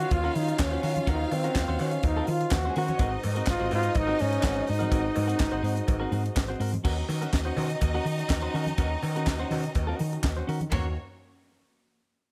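A punchy, jazz-style trombone leads this danceable, driving disco excerpt in Eb dorian at 124 BPM, its forceful scooped notes up front until 6.4 seconds over a tight funk drum kit with bright cymbals and handclaps, a round hollow-body fingered bass, twangy clean electric guitar, a lush bowed string section carrying a second line, distant mellow French horns holding chords, and very quiet congas and cowbell, all moving from Ebm7 to Ab9 in a light reverb.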